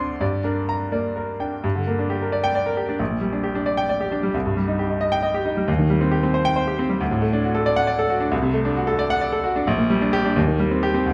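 Close, detailed microphones catch a clear, up-front baby grand piano with natural tone and short sustain in a moderate recital hall, playing a passionate, stormy classical virtuoso study in a rubato 6/8 that spans Bb1 to C6 over a minor progression through a dominant chord and back, cut from a longer piece.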